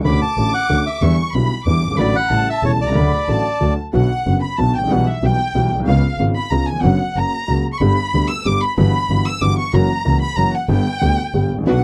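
Nostalgic and playful, this tango excerpt moves at 186 BPM in a rubato 3/4, opening in D major before turning to B minor at 3.9 s. A dark, reedy bandoneon carries the melody up front until 3.7 s over a boxy, intimate grand piano with audible action noise and a biting, bowed double bass, while an expressive violin section with vibrato sings a high second line and takes a solo from 3.9 s. A sul tasto string section adds soft, floating stabs at 11.7 s, and the recording has a dry, close 1970s-style studio sound.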